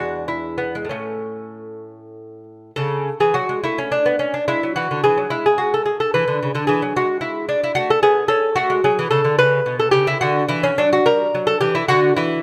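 Flowing and serene, this brief excerpt of a baroque-style classical dance in a rubato 6/8 features a solo lute, bright and delicate, fingerpicked on nylon double strings with some octave-doubled courses, sitting up front in a moderate recital-hall reverb as its harmony drifts toward D major from 9.4 seconds.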